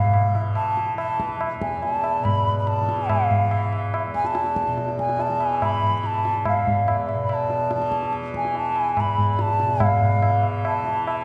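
A close-miked bamboo bansuri and a softly plucked tanpura open this devotional, meditative Hindustani classical passage together, and the tabla joins a moment later at 0.1 seconds. The airy bansuri carries the melody up front, its tongued notes colored by vibrato in a high, narrow register. Beneath it, the tanpura sustains a low, buzzing drone with a shimmering, warm glow, sitting softer than the other parts. The high-tuned tabla rings out in a straight four-beat metre, sounding close and dry near the front. The whole piece sits in the lingering reverb of a church or concert hall, giving it a spacious, contemplative air across this short section cut from a longer performance.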